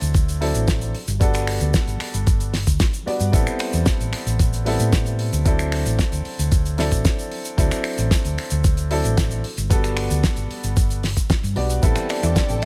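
Nu-disco in D mixolydian at 113 BPM, this groovy, sunny excerpt rides a straight 4/4 feel built on a gritty, overdriven electronic kick, a damped 70s kit of dry, fat snare, hi-hat, shaker and finger snaps, and a dark, round hollow-body bass that pumps to the sidechain. A baby grand piano with long sustain and dub echo plays through D7, Gmaj7 and Am7 changes, while near 11.8 seconds a lush bowed string section with sampler grit and a bright, detuned analog pluck arpeggio slip in behind. A soft octave-layered synth lead with chorus touches a held D5 at 12.1 seconds, all set in a studio reverb.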